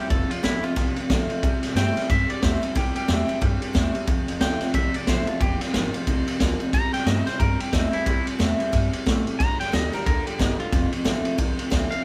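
Rowdy and upbeat, this rockabilly fragment has a light swing in 4/4, with the band playing live together in one room under light reverb. A clean, twangy electric guitar carries the melody through analog delay, while a second electric guitar, run through a small old amp, plays a low riff with a bright, slightly broken-up edge. A picked steel-string dreadnought fills out the accompaniment with a full-bodied tone from fresh strings, and finger squeaks can be heard along the way. The upright bass stays in the background with a woody, thumpy gut-string pizzicato, and the vintage drum kit, the loudest part, stands up front with a punchy kick, high-tuned snare and dark cymbals. Over the 12 seconds the chords move from F and C through Fm7 to G and back to F.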